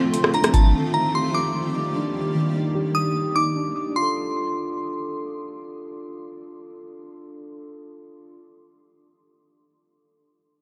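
Atmospheric cloud-rap hip hop at 149 BPM in a half-time 4/4 feel, this blissful, dreamy fragment of a longer piece sits in F mixolydian and moves from an F6 chord to Ebmaj7 before returning to F6 at 4.0 seconds. A glassy, crystalline synth bell carries the melody up high until 5.1 seconds, its mellow FM tone shimmering with chorus, tremolo and tape echo. Muted, felt-like synth keys play intimate, warbling arpeggios through to 8.5 seconds, a vintage blend of triangle and sawtooth with a noise layer, colored by chorus and tape echo. A granular cloud pad holds blurred, detuned chords only until 2.3 seconds, breathing with sidechain pumping and its own built-in reverb. A booming analog drum machine with a deep kick, metallic hats and a rim click appears briefly from 0.1 to 0.7 seconds, sitting up front with a tape-warm character. The production is dark overall, with light reverb and digital ambience.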